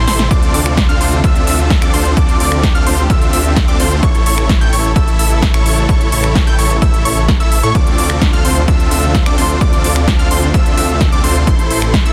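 Euphoric and anthemic, this excerpt of festival progressive house moves in a straight 4/4 pulse over chords from Dm7 to A and back, opening with a short drum fill before an overdriven, punchy electronic kick arrives up front at 0.3 seconds alongside a big-room kit of crisp hats, snare and finger snaps. Huge, lush supersaw chords carry the riff with vintage 12-bit sampler grit and tape echo, while a thick, menacing detuned saw bass pumps beneath them and a catchy plucky unison lead spins high arpeggios through its own tape echo. Very quiet, dark studio strings hold sustained chords in the background, all set in a dense, heavily limited mix with little reverb.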